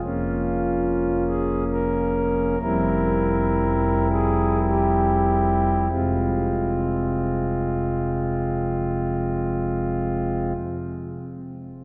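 Dark and grave, this brief classical chorale for solo pipe organ is cut from a longer piece and unfolds in F minor at a rubato 3/4, drifting between 46 and 74 BPM. The organ plays alone for the whole 10.5 seconds on a principal stop, its tone smooth and warm with a romantic voicing, reaching from a deep F1 in the bass up to Bb4. Over the first 5.9 seconds the music slows down as the harmony moves from Bbm/F to C7/F with F in the bass, before settling onto an F minor chord as the second section begins at 5.9 seconds. The instrument sits up front, yet it is bathed in a cathedral reverb with a long 5.7-second decay that lets each chord hang heavily in the space. The effect is solemn and weighty, like a fragment of a hymn heard in a vast stone nave.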